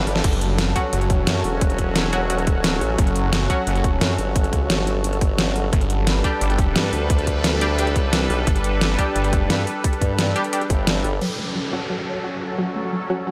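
A reverb-soaked, dreamy mix frames this tense, aggressive dark technical drum and bass excerpt at 175 BPM in F# phrygian, where a drum fill opens a drop driven by an up-front overdriven electronic kick and a dubstep kit with deep snare and metallic hats, a growling distorted saw bass and a formant-sweep wobble bass moving over F#m and G, a nasal band-passed chord stab in the background, an airy resonant pad with chorus and sidechain pumping, and a swell, before the kick drops out at 10.9 seconds and a downlifter leads into a round analog pluck arpeggio carrying a filter sweep from 11.2 seconds.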